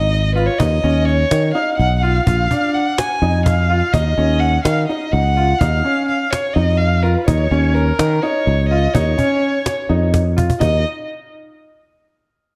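Driving and intricate, this progressive instrumental excerpt moves in 7/8 at 252 BPM (eighths) in Eb minor. A dark, woody bowed violin carries the melody with vibrato, while a bright grand piano spins brilliant, long-sustaining arpeggios, both touched by analog delay. Beneath them, a growly, up-front fretless electric bass and a snappy, close cajon played with hard hands drive the groove, and the cajon adds a fill from 10.1 to 10.6 seconds, all within a dreamy mix soaked in plate reverb.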